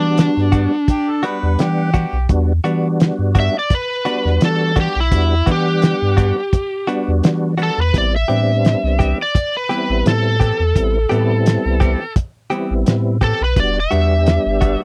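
An overdriven slide guitar, bright and up front and played with fingerpicks, carries the melody through this smoky, mournful excerpt of straight-eighth soul blues in E minor at 85 BPM, set against a light sixteenth-note swing. Beneath it, a tonewheel organ fills out the accompaniment with key click, chorus vibrato, a touch of overdrive and a slowly turning rotary speaker. A clean electric guitar, recorded direct with a compressed, scooped tone and a tremolo effect, adds picked stabs. A pure sine sub bass sits deep, smooth and dark under everything. Almost at once a cloth-damped, thuddy drum kit comes in with hi-hat, tight kick and a fat, gritty snare, its muffled, rolled-off sound placed close at hand. A distant, roomy harmonica with light vibrato and overdrive slips in briefly between 0.9 and 2.3 seconds. The harmony moves from Em9 to Am9 at 7.9 seconds before returning to Em9, all captured as a dry, close 1970s-style studio recording with little reverb.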